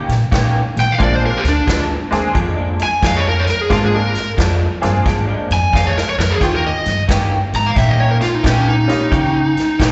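A swung 4/4 shuffle at 89 BPM drives this rollicking, swaggering electric blues excerpt in Bb mixolydian, moving from Eb7 to Bb7 and back again. A big-band drum kit with a medium-tuned snare, boomy kick and hi-hat and a woody pizzicato upright bass underpin a slightly broken-up, lo-fi guitar riff coloured by analog chorus and slapback echo. An up-front, overdriven lead guitar takes the melody from 0.8 seconds, joined at 1.0 seconds by a jangly, detuned honky-tonk piano, and a drum fill at 5.7 seconds sets up the return to Eb7, all heard as a live gig through the venue's PA with moderate club reverb and a rolled-off top end.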